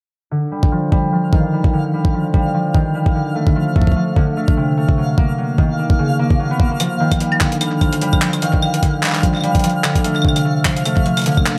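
Glitchy and playful, this short cut from a longer IDM piece moves with a swung 16th-note feel. A fingerpicked concert harp opens at 0.3 seconds with ringing low arpeggios, set up front and run through a low-pass filter sweep and digital delay. A thumpy, compressed electronic kick joins at 0.6 seconds, pitched up and gritty with a tape-tinged, small-room character. From 1.3 seconds a faint twinkling granular texture hovers high above with slow, sparkling FM shimmer and its own reverb. At 6.8 seconds a jungle sampler-style kit adds claves, handclaps and hi-hat, echoed by delay and roughened like the kick. Under a light digital ambience, the harmony cycles from Ebmaj9 through Csus24 and a rootless Bmaj9 before returning to Ebmaj9.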